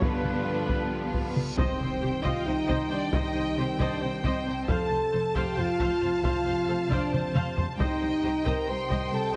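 Drenched in scoring-stage reverb yet squeezed into a heavily compressed, radio-like sound, this relentless, epic orchestral film-score excerpt in 7/8 sets a lush, vibrato-rich violin melody and a second, more distant violin line over bowed violas, dark French horns, soft-attack trombones, expressive cellos and very quiet double basses, with hard-stick taiko drums in a small room playing throughout, clear trumpet stabs only in the first 1.3 seconds, a huge, bright reverse cymbal and impact in the background arriving at 1.2 seconds, and a drum fill at 7.1 seconds.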